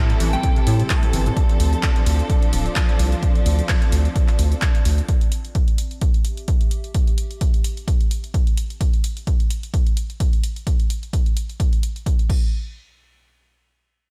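Gritty and driving, this acid house excerpt opens with a squelchy, resonant acid bass riff whose filter sweeps across its brief first 1.3 seconds, while a soft FM synth bell chimes in the background and a clear, lush bowed string section holds sustained chords that pump with the sidechain. A deep, saturated sub bass sits up front beneath a warbling, nostalgic lo-fi pad that fades out by 8.8 seconds, and a dry, punchy electronic kick pushes on alongside an overdriven analog drum machine of crash, handclaps, hi-hat and shaker until 12.4 seconds. The mix is close with little reverb, a faint mains hum sitting under chords that move from Am7 to Dm7 and back.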